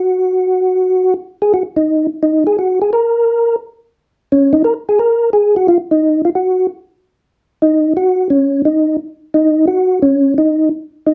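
A percussive tonewheel organ opens the recording, its soft, flute-like tone set up front with clean second-harmonic percussion. This is fast jazz in Eb minor at 174 BPM in 4/4, with a swing feel on the eighth notes and a bluesy, late-night mood. The organ is the only part heard, staying in a compact middle register from Db4 to Bb4, with a slow rotary speaker and chorus vibrato giving it a gentle, mellow shimmer. At 7.0 seconds the music moves into a new section, and the organ carries a solo from there until the fragment ends at 11.1 seconds. A wet club ambience with a short decay surrounds the instrument, making it feel like a small room after hours.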